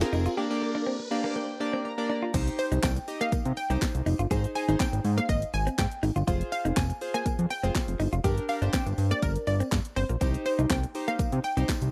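Confident yet bittersweet, this dance-pop excerpt opens with a short build-up: a drum fill, an electronic riser and a break in which glossy, chorused retro synth keys play a fill before the drop lands at 2.3 seconds. The house drum kit sits up front with a punchy kick, cracking snare, handclaps, hi-hat, shaker and crash, sounding layered and tape-warm as if re-recorded in a large room, while a very quiet, jingly tambourine adds a faint shimmer. Underneath, a fat, saturated analog bass built from detuned sawtooth, square and sine waves pumps with sidechain, as do the pulse-wave synth keys. A clean, direct-recorded electric guitar plays a compressed, picked riff through lush chorus, and from 2.6 seconds an analog pluck carries the melody with a round, detuned tone, chorus and slapback echo. The chords move through Gm, Cm, Ab and Fm, and the mix is dry and close, like a 1970s studio recording.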